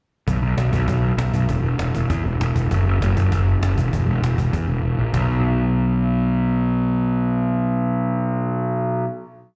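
A fuzz-laden picked electric bass and a snappy cajon burst in together at 0.3 s. The bright, overdriven bass drives eighth notes up front while hard hands push a fast punk groove on the cajon, its snares rattling. This short punk rock piece feels raw and urgent, heard like a live gig through the venue's PA with small-room ambience and recital hall reverb; the cajon's kick and snare drop out at 4.8 s before the bass holds a final note that rings until 9.0 s.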